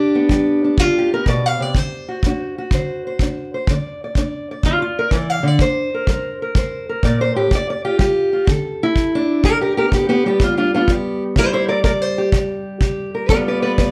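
Laid-back and rollicking, this short excerpt of acoustic country blues swings along at 125 BPM in G mixolydian, led by an up-front fingerpicked steel-string acoustic guitar with a boxy parlour tone that carries the melody over chords moving from G through D7, C5 and Dmadd11/G before a brief break. A tight, brushed kick drum joins at 0.3 seconds, sitting close in a studio room with moderate reverb. At 9.4 seconds the guitar takes a solo over G, C5 and a closing G7.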